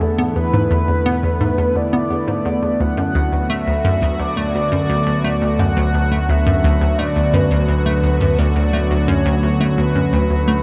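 Dark, warm production bathes this cosmic, luminous clip of sequencer-driven ambient space music in a moderate plate reverb. At 86 BPM in a straight 4/4 and D major, a hollow, bouncy square-wave pluck sits up front with its riff, a fat analog bass holds a low E, and an airy, evolving sawtooth pad sustains chords that move from E7sus4 to D6. Over them, a round, horn-like synth lead with vibrato sings a mellow melody through lush chorus and tape echo, with all four parts playing together across the full 10.6 seconds.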